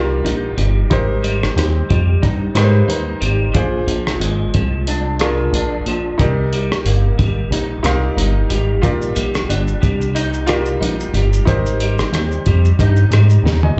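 Heard as a live gig through a venue's PA, this excerpt of dreamy, sunny indie and bedroom pop carries a dry club ambience with a dulled top end. A glossy, detuned synth bass sits up front beneath a woody, brilliant upright piano coloured by cassette tape, plate reverb and slapback echo. Alongside them, a slightly broken-up electric guitar through a small old amp wavers with ensemble chorus and warbly pitch drift. A muffled, cloth-damped drum kit with a fat snare and tight kick enters at 0.3 seconds, using hi-hat, rim click, shaker and toms over a gently swung 16th feel, and ends on a fill at 13.4 seconds.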